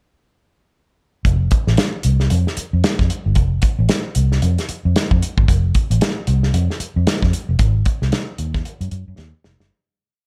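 Funky, playful funk at 113 BPM with a swung sixteenth-note feel in F mixolydian, where a dark, round, foam-muted fingered electric bass plays a syncopated riff anchored on the downbeat with muted ghost notes, alongside an up-front small-room soul drum kit of hi-hat, tight kick and medium-tuned snare with a rolled-off top and a ghost-noted groove, both entering at 1.2 seconds in a light-reverb breakdown that fades out from 7.6 seconds and closes on a drum fill at 9.2 seconds.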